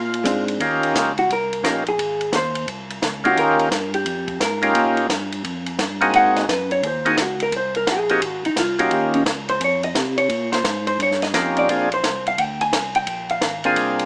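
A greasy, swinging soul jazz organ trio opens at a brisk 173 BPM in Eb mixolydian, with a thick, lightly overdriven percussive organ carrying the melody through a slow rotary speaker and plate reverb, over a fat tonewheel organ bass line colored by chorus vibrato and key click. A compact cocktail kit with dark cymbals, a high-tuned snare and a tight kick drives the swung eighths, while an up-front, clean, compressed hollow-body jazz guitar takes a solo from 0.6 seconds over Eb9, Ab9 and Bb9 changes. The melody organ drops out at 9.2 seconds and returns at 11.3, and the whole piece, cut from a longer performance, has a small-speaker sound in a moderately reverberant studio.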